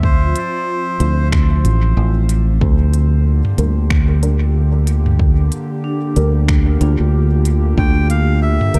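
A round, punchy fingered electric bass sits up front in this hazy, meditative ambient dub excerpt at 93 BPM with a swung 16th feel, moving from Dm7 to Gm/D beneath a warbling, detuned tape-like pad with chorus and reverb, a deep, overdriven electronic kick drum that stops at 7.9 seconds, a crisp-hatted electronic kit of finger snaps, hi-hat and toms with dub echo entering at 0.4 seconds, a muted, nasal filtered chord stab with phaser and dub echo in the background, a metallic, ringing vibraphone playing echoed arpeggios from 5.8 seconds, and brief reedy, breathy melodica phrases with dub echo at the opening and close, all set in a dark digital ambience.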